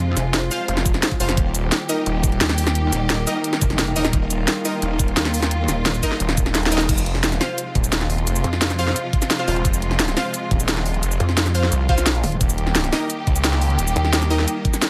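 A distant, lush string section holds sustained chords under sidechain pumping, joined from the start by a pulsing, saturated pluck wobble bass with chorus and a blurred granular cloud pad drifting in the background until 6.9 seconds, in this tense, dark technical drum and bass cut from a longer piece. Overdriven drums with a cracking snare and bright hats sit up front alongside a knocking, tape-warm electronic kick, while bold orchestra-hit-like sawtooth stabs punch out with reverb and digital delay, and a snarling, growling distorted saw bass pumps beneath over an Fm to Eb progression. A drum fill and a band accent mark the turn at 6.9 seconds into a second drop, where the wobble bass returns intermittently.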